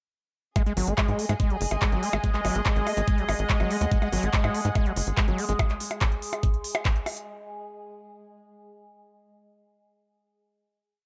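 A knocking electronic kick sits up front in four-on-the-floor at 143 BPM, driving this hypnotic, alien psychedelic trance piece, which is one continuous drop from 0.6 seconds, while a tight, nasal sequencer bass gallops in sixteenth notes and a squelchy, gritty acid line with accents and slides snarls through distortion, cassette tape and delay. Layered techno drums add smooth hats, claps and high bongo over the steady pulse, and a veiled, con sordino string section slowly shifts its dark chords. From 1.6 seconds a resonant drone with moving overtones sustains through chorus and phaser, pumping with the sidechain until the close at 7.3 seconds, all set in a light reverb.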